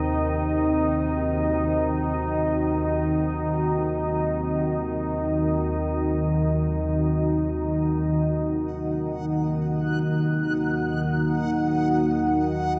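Unsettling and ominous, this dark ambient drone excerpt drifts in free time in Eb dorian, tuned slightly low at A4 = 439 Hz. A deep, moody pad holds sustained chords from the start, its detuned sawtooth and sine layers thickened by a sub octave and chorus, sitting up front with slow attacks and long releases. Beneath it, an organ-like drone built from wave-folded sine tones sustains low in the register, calm and steady under an ensemble chorus. The harmony rests on a rootless Ab before settling onto Eb minor at 8.1 seconds, and at 8.9 seconds a reversed, granular texture enters on a high Gb, a bright, dreamy shimmer mixed more quietly than the other parts. The whole piece is bathed in a huge, wet reverb with an 8.6-second decay, and the excerpt is cut from a longer work.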